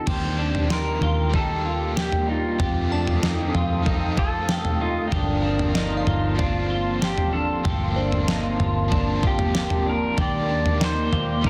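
Blissful and floating, this dream pop excerpt drifts over a straight 4/4 pulse, moving from Ebmaj7 through F9 to a long stretch on Gm11 before returning to Ebmaj7 at 10.2 seconds. A twangy pedal steel guitar carries the melody, played with fingerpicks and slide, its compressed volume swells sitting over a nostalgic, warbling pad of detuned sawtooth and triangle tones with chorus and a lo-fi haze. Beneath them, a hollow-body semi-hollow electric guitar picks clean arpeggios through analog chorus and delay, while a double-tracked overdriven electric guitar adds bright accompaniment shaded by tremolo and subtle chorus. A dark, round, foam-muted electric bass gives a punchy low end, and a thumpy, sampler-style 12-bit drum machine sits up front with a fat snare, toms and crash cymbal. A crystalline FM synth bell glints in the background with chorus and delay until 10.1 seconds, all set in a moderate recital hall reverb with a dense, heavily limited modern master.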